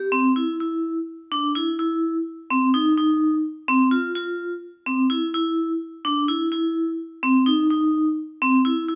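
Set in a straight 5/8 metre, this progressive instrumental fragment moves with an intricate, driving pulse. A lone vibraphone struck with hard mallets carries the whole passage, playing solo from the start through 9.0 seconds within a compact middle range of C4 to F4. Its tone is metallic and bright, each note ringing under a fast motor vibrato, and it sits up front in the mix. A moderate stone-room reverb lends the sound a hard-surfaced sense of space, and the recording has the immediacy of a band playing live together in one room. The passage is cut from a longer piece.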